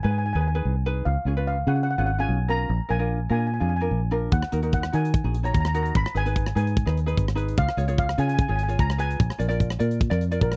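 A dry, close recording with small-room ambience and a 1970s studio character frames this tense, dramatic calypso excerpt in straight 4/4, moving through minor and dominant-seventh chords. A shimmering, metallic lead steel pan, played with medium rubber sticks and touched by slapback echo, carries the melody over mellow fingerpicked ukulele and a round, foam-muted electric bass that sits up front. A tight drum kit of hi-hat, kick and rim click joins at 4.3 seconds, and the ukulele adds a brief fill at 10.2 seconds.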